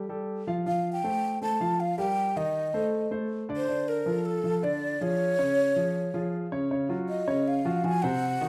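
A breathy, hollow jazz flute with vibrato and tongued notes sits close and up front, entering at 0.7 s over a natural-sounding concert grand piano with deep bass, in a sunny, sophisticated jazz excerpt bathed in a large studio reverb with a dark production.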